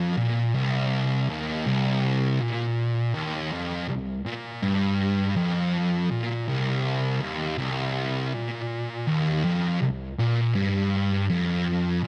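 A slow, straight 4/4 pulse at 81 BPM drives this brooding metal fragment in C minor, cut from a longer piece and lasting about 12.1 seconds. A thick, double-tracked fuzz guitar plays alone and up front throughout, its picked, distorted notes sitting low between C2 and Bb2. Moderate studio reverb and a dark, warm production give the ominous riff a heavy, enclosed weight.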